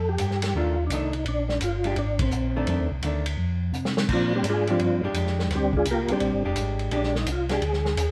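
A swung eighth-note groove in four drives this soulful, greasy soul jazz organ trio excerpt, cut from a longer piece. A tonewheel organ carries the melody with a percussive, key-clicking attack, colored by chorus vibrato, a fast-spinning rotary speaker and plate reverb. A second, rounder tonewheel organ holds down the bass through a slow rotary speaker, and both organs sit up front. A dry, mid-forward acoustic kit with dark cymbals, a medium-tuned snare and a tight kick enters just after the start, while a clean, picked hollow-body archtop guitar fills in accompaniment over F13, Bb13 and F6 harmony. The band hits an accent at 2.1 seconds, and a drum fill at 3.7 seconds leads into an organ solo from 4.1 seconds to the end. The group is heard from further back in a moderately reverberant studio room.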